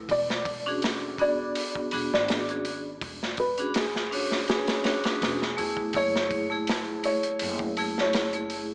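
A felt-muted upright piano carries the melancholic melody with a soft, dark, intimate tone and a tape echo. Beside it, an up-front vibraphone struck with medium hard mallets rings bright and airy through harmonic tremolo and its own tape echo, while a saturated, gritty breakbeat kit with a tight kick and rolled-off top drives the slightly swung trip hop groove and a woody pizzicato upright bass sits in the background. The hypnotic passage is cut from a longer piece and moves from E13 to F#m7 at 5.9 seconds, all bathed in a moderate spring reverb with a small-speaker sound.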